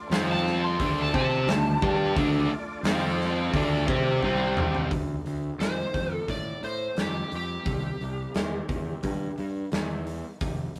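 A rough rehearsal-room recording with warm saturation and light reverb opens this heavy, smoky blues rock and southern rock fragment, set at 87 BPM in a straight 4/4 in D minor. An up-front, double-tracked overdriven electric guitar drives a picked riff through F5, Dm and C5 changes until 4.9 seconds, while a very quiet, gritty tonewheel organ holds thick sustained chords through a slow rotary speaker with chorus vibrato and key click. Over them, a lead guitar through a small cranked amp plays a picked, overdriven solo through the first section. The fuzz fingered bass sounds bright and growly, and the big rock drum kit has a dark, smooth tone with a punchy kick, a medium-tuned snare and a rolled-off top. A drum fill from 4.2 seconds leads into a second section, where the lead guitar's melody continues until 9.4 seconds and bass and drums carry on through Dm and C to the end of the cut.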